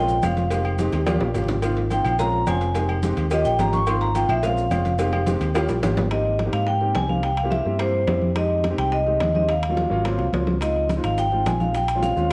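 A bright vibraphone solo with medium hard mallets opens this sophisticated, lively Afro-Cuban jazz excerpt at a brisk 214 BPM in Ab major, carried by a warm, up-front grand piano and a dark, punchy fingered electric bass, while damped congas, grainy maracas that drop out at 6.1 seconds and return at 10.6, round cowbell and hard-handed bongos, and dry, metal-shelled timbales with agogo bells fill the groove with several drum fills, all set in a large studio reverb and blurred by the warbly pitch drift of worn cassette tape.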